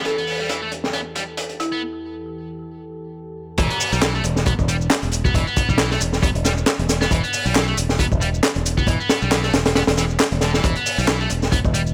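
Gritty, funky breakbeat cut from a longer piece at 136 BPM in E minor, where a warbling, nostalgic tape-like pad holds sustained chords with chorus and sidechain pumping and a woody marimba plays a brief telephone-filtered melody, while a bright, overdriven guitar riff runs under a filter sweep through a break at 1.8 seconds until the drop at 3.6 seconds brings in a round, punchy fingered bass and background electronic shaker and handclaps, all driven by a crunchy, saturated, up-front drum kit with dark cymbals, a high-tuned snare and a rolled-off top.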